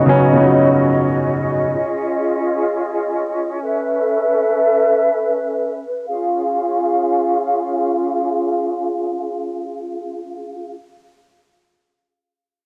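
A breathy large flute ensemble, close-miked with vibrato and tongued attacks, holds unsteady sustained chords up front through 10.7 seconds, moving from Db9sus4 through Eb9sus4 and Cb9sus4 before settling on Db at 6.1 seconds. A polished, present grand piano accompanies only briefly, stopping at 1.7 seconds, in this relaxed, soulful amapiano fragment in free time and Db mixolydian. Both parts are low-pass filtered with a cassette tape character, set in a moderate spring reverb that gives the home cassette recording a hazy, intimate glow.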